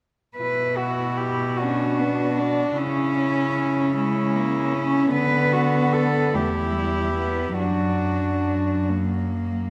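Set in a wet concert hall with a long reverb tail, this melancholic, solemn classical passage for a cello quartet in B minor drifts at a rubato 50 BPM in 6/8, its chords moving from Bm through C#m6 and Em to D/F#. A pure, nasal sul tasto cello sings the up-front melody until 8.9 s, a warm second cello with light vibrato shades a lower inner line, and a clear, floating bass cello anchors the bottom. From 1.6 s an intimate fourth cello adds airy-bowed accompaniment, every part bowed by a single player with a soft attack.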